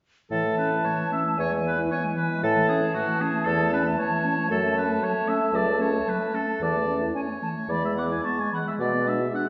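Cheerful and graceful, this quick classical-period excerpt for wind quintet in A major moves at 108-118 BPM with a rubato feel, as a hollow, pure concert flute with vibrato carries the tongued melody high above a warm oboe second line, while a dark clarinet and a soft-attack French horn accompany over a mellow bassoon bass, all set in a wet scoring-stage reverb heard from further back in the room, with the flute dropping out at 8.6 seconds before the passage settles on a G#m7b5/B chord.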